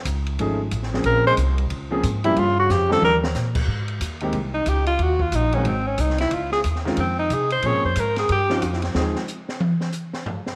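A breathy, punchy tenor saxophone with a smooth top and scooped notes carries this swinging, sophisticated small-group jazz excerpt at 182 BPM, taking a solo in Ab major from 3.7 seconds after briefly sharing the opening with an alto saxophone whose vibrato and soft attack are framed by slapback echo. Underneath, a woody pizzicato upright bass with transformer saturation and a vintage-toned concert grand piano with deep bass move through richly altered chords. An acoustic drum kit with dark cymbals, a high-tuned snare and a boomy kick plays a fill before the tenor solo and takes a solo of its own at 8.9 seconds, all set in an echo-chamber reverb with small-room ambience.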